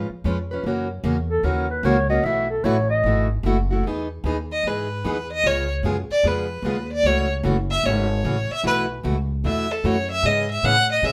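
Charming and lively, this short cut from a longer acoustic string swing piece moves at 150 BPM in 4/4 with a swung eighth-note feel in E major. A bright, picked steel-string acoustic guitar with fresh strings and a parlour character plays accompaniment throughout, alongside a pizzicato upright bass whose gut strings give a woody, dark, thumpy tone. In the first section a breathy clarinet takes a brief solo from 1.3 seconds, its mellow, whispered sound marked by soft attacks, scooped notes, light vibrato and an intimate, vintage jazz style. At 3.8 seconds the second section begins, and a clear violin enters at 4.5 seconds with a smooth, even, slightly nasal bowed melody and light vibrato, heard as a single player at a distance. The harmony moves through dominant and suspended chords such as C#7, F#7 and B9sus4, along with Emaj7 and F#m7, closing on C#m7, all set in a moderate studio reverb.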